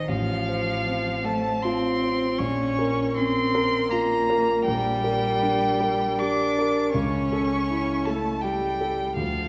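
From the first moment a rich, vibrato-laden violin sings the melody up front while a clear, smoothly bowed cello carries a second line beneath it and a dark, mellow grand piano with long sustain supplies the accompaniment, forming a melancholic, elegiac slow romantic movement for piano trio in a rubato 3/4, set in a reverberant recital hall and cut from a longer piece.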